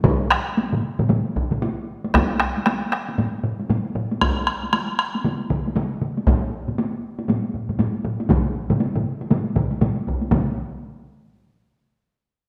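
A solo taiko drum played with heavy sticks sounds from the first moment, its tone compressed and saturated and placed up front. Alongside it, three taiko ensemble parts fill out this Japanese traditional drum passage, cut from a longer piece: two struck with hard sticks and carrying a live-room ambience, the third played with heavy sticks and captured close. The mood is powerful and driving, set in 4/4 at 118 BPM with a 60% swing on the sixteenths, and the tempo speeds up across the whole passage. Every part sounds acoustic and sits up front, all bathed in a lush scoring-stage reverb with a 1.5-second decay. The ensemble parts drop out between 10.5 and 10.8 seconds as the music moves from its opening section into a brief new section at 10.3 seconds.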